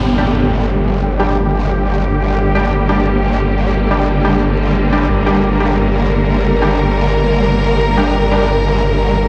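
A straight 4/4 drum and bass pulse at 177 BPM in G minor drives this tense, mechanical fragment, where a growling, detuned bass holds a distorted, chorused low G up front under lush bowed symphonic strings with vibrato sustaining a Gm chord through a low-pass filter sweep, an electronic downlifter falls away by 2.4 seconds, and bold, nasal orchestra-hit-like stabs with tape colour, delay and their own reverb punch in from 0.2 seconds, all set in a big, bare room.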